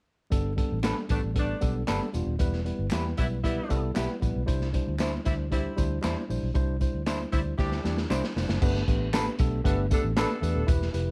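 Gritty, saturated breakbeat drums sit up front in this uplifting 1960s-style soul excerpt, joined by a round, foam-muted fingered bass, a worn, slightly out-of-tune tine electric piano, tambourine and group handclaps in the background, lo-fi, slightly broken-up guitar stabs from 0.8 s, and a vibrato-rich jazz saxophone section carrying a second line from 1.1 s, all set in light reverb with vinyl crackle and a dark, warm production, and a drum fill at 7.6 s.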